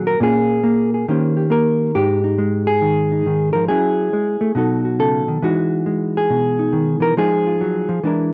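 Solo jazz with a swinging, smoky mood, this short cut from a longer piece features a lone hollow-body electric jazz guitar, dark, clean and fingered, sitting up front in a large studio's moderate reverb, moving through chords from Bbm7 to Emaj9 to Fm7 over about 8.3 seconds, while worn cassette tape adds a warbling pitch drift.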